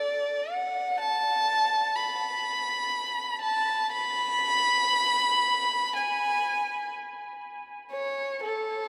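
Lyrical and serene, this short classical fragment is cut from a longer expressive piece for unaccompanied violin. A single bowed violin carries the line alone from 0.0 to 8.9 seconds, moving freely in rubato around 58-63 BPM in 4/4. Its tone is dark and woody, colored by vibrato, and it sits between A4 and B5, tuned to A4 = 438 Hz. The player is placed up front, yet the sound blooms into a vast cathedral reverb with a decay of 5.7 seconds, giving it an echoing halo.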